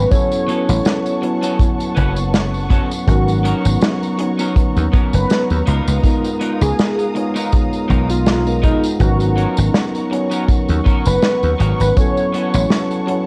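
Vaporwave at 81 BPM in G# dorian with a 16th-note swing, nostalgic and woozy on worn, warbling cassette tape, where a velvety detuned sawtooth synth lead with chorus, tremolo and tape echo sings the melody over a mellow tine electric piano carrying lush chorus and 12-bit sampler grit, woody bowed strings holding sustained chords, a bright foam-muted thumbed slap bass and punchy kick up front, a small-room acoustic kit with hi-hat, snare and tambourine played with bundle sticks, and a compressed, slightly broken-up electric guitar riff with analog chorus entering at 0.5 seconds, all drifting through A69, G#m11 and C#13 in a short cut from a longer piece.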